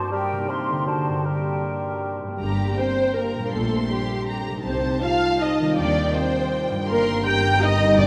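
A restless, stormy classical excerpt in G minor at 160 BPM in 3/4 opens with bright, ringing concert harp arpeggios beneath an airy large flute ensemble, a clear clarinet, a mellow cor anglais and a bassoon accompaniment, until at 2.4 s lush bowed strings enter, with a violin section carrying the expressive vibrato melody over a darker, distant second violin line, an up-front viola section and cellos with chamber double basses on the bass, while a tight French horn section holds sustained chords, a dry timpani stroke lands at 8.0 s, and a vast, echoing cathedral reverb surrounds the ensemble.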